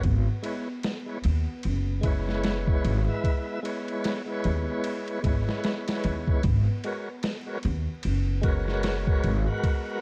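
Hypnotic and cinematic, this 75 BPM trip hop excerpt with a 16th-note swing sets a gritty, compressed sampler drum kit with a thumpy kick, medium-tuned snare and ride cymbal alongside a woody, gut-string pizzicato upright bass up front, a lightly overdriven tonewheel organ with key click, fast rotary speaker, tremolo and tape echo, and a tense, nasal bowed-like drone held on B3 in the background, all in a dark production dusted with vinyl crackle as the harmony moves from F#7sus4 to G#m11 at 6.4 seconds.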